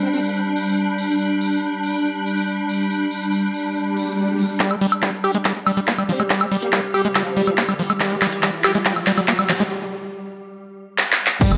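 Psychedelic trance at 141 BPM, intense and driving, opening on a swarming, detuned drone that pumps under a G5 chord while a distant, jingly tambourine and brief touches of a wobbling formant-sweep bass sit in the background. After an electronic swell from 3.9 seconds, at 4.6 seconds a punchy electronic kick, a tape-warm techno kit with cracking snare, smooth hats, crash and woodblock, and a squelchy, screaming distorted acid riff under a filter sweep drive a build-up with a drum fill and a riser, while a sub drop adds a further electronic effect. A break follows, and just after an impact at 11.4 seconds a tight, punchy sequencer bass enters on G1, all within a moderate digital room reverb.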